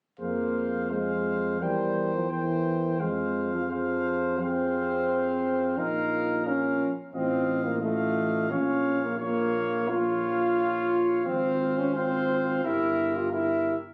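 At 0.2 seconds a brass quintet enters all at once, playing a solemn, grave classical passage in 4/4 with a flexible, rubato feel, cut from a longer piece. A clear cornet carries the melody high above with a soft attack, while a distant, roomy trumpet sings a second line just beneath it. In the background, a mellow French horn with light vibrato and a punchy yet smooth-topped tone fills out the accompaniment. A warm, close-miked trombone sits up front in the middle of the texture with its own gentle attack, and a dark bass trombone, also touched with light vibrato, anchors the low end until 13.7 seconds. The minor-key harmony moves through a sombre chain of chords, and the phone recording places the group in a club-like room with light reverb.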